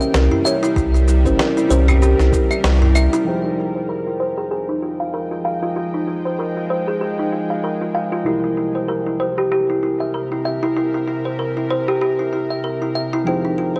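A dry, gritty hardware sound with light digital ambience frames this hypnotic organic downtempo excerpt in F minor at 96 BPM with a 16th-note swing, where a woody, hollow-boxed kalimba plays arpeggios through sampler grit, analog delay and a filter sweep from 3.3 seconds, over muted felt-like synth keys with chorus and sidechain pumping and a tense, bright bowed-like drone holding sustained chords, while a round, deep sub bass, thumpy electronic kick, fat-snared cabasa, snare and claves kit, and a very quiet udu drive the opening before dropping out by 3.2 seconds, around a band accent at 2.6 seconds, as the chords move from C7b9 to Fm7 and C7.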